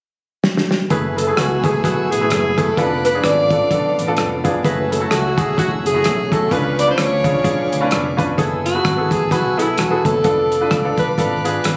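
A warm, subtone alto saxophone sits up front, carrying a soulful, fervent jazz-style melody over an uptempo gospel groove in F# minor at 128 BPM, with a swung feel built on rich minor-eleventh and altered dominant chords. A drum fill at 0.4 seconds kicks off a dry, muffled soul kit with a tight kick, joined by a punchy fingered electric bass, a clear baby grand piano with short sustain, and a distant, floating sul tasto string section in the background. A clean tonewheel organ with slow rotary speaker sits behind them until 8.4 seconds, and the whole snippet, cut from a longer piece, has a small-room, phone-recorded character with club reverb and compression.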